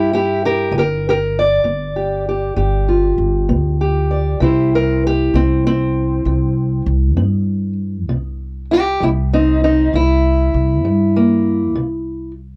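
Acoustic country blues with a laid-back, gritty mood, moving at a slow 65 BPM in a straight 12/8 feel centered on C mixolydian. A fingerpicked steel-string acoustic guitar carries the melody, its dark, boxy parlour tone sitting up front, and from 4.4 seconds it takes a solo that runs to the close. Beneath it, an upright bass played pizzicato on steel strings holds down the low end with a woody, warm sound, also placed up front in the mix. The harmony opens on a rootless C7, shifts to G7 at 0.7 seconds, and settles on C when the solo begins. The recording is dry and close, with little reverb and the character of a 1970s-style studio session, and this short passage is cut from a longer piece.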